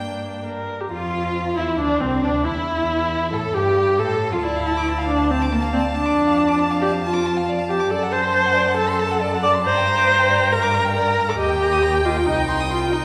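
Stormy and urgent, this quick classical-period movement for string quartet drives along at 137 BPM in a straight 4/4, starting in D minor and turning toward G minor at 7.9 s in this short cut from a longer piece. The warm, focused first violin carries the melody, while the second violin adds a rich, expressive line with vibrato and portamento. The viola's accompaniment sits up front with a smooth top, and the cello supplies a distant, soft-attacked bass with gliding portamento, all bowed in a reverberant recital hall.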